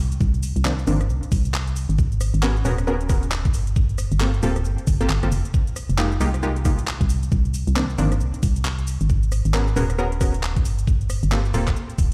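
Skippy and late-night, this cut from a longer two-step UK garage track moves at 135 BPM in 4/4, with a 60% swing on the sixteenths. A hollow, organ-like FM bass sits up front from the opening second, its fast attack and dark decay ranging from D1 to C2. The knocking electronic kick enters at 0.2 seconds, tape-toned and forward in the mix, while a layered garage kit adds handclaps, a rim click, a shaker and metallic hi-hats, all touched by studio reverb. From 0.7 seconds a punchy, detuned chord stab of sawtooth and pulse waves carries a filter sweep, chorus and tape echo through minor eleventh chords: Cm11, Abm11, Gm11 and Fm11. The whole piece sounds as if played on a big sound system in a bare room, wrapped in large studio reverb and digital ambience.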